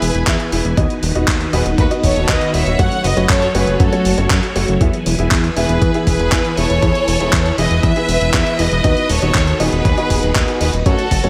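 Sunny and playful, this italo disco excerpt sets a clear, focused violin section with vibrato up front over swirling phased string-machine chords in the background, mellow stabs from a dark baby grand piano, a fat sawtooth analog bass with a filter sweep, and gritty, overdriven sampler-style drums with handclaps, hi-hat and gated reverb, joined at 0.3 seconds by a thumpy electronic kick, all in light digital ambience.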